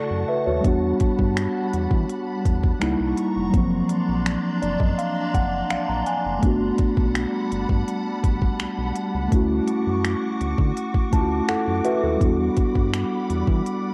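A mellow tine electric piano sits up front in this dreamy, smooth contemporary R&B excerpt, playing accompaniment across the whole passage in D major at 83 BPM and adding fills from 4.3 to 6.4 seconds and again from 10.8 to 12.2 seconds, its clean tone colored by cassette tape. Beneath it, a glassy FM pad holds sustained chords with a slow attack and long release, made ethereal by ensemble chorus and its own built-in reverb. A round analog bass, deep and dark, blending sawtooth and sine with a fast attack, enters at 0.1 seconds. A trap drum kit joins at 0.6 seconds with a knocking kick, crisp hi-hats and finger snaps, its electronic, produced sound tape-warm and placed up front. The harmony moves from Dmaj9 through Em7, C#dim7 and D7alt/F# to Gmaj9 before returning to Dmaj9 and Em7, all in a homemade cassette recording with light digital ambience and a faint mains hum.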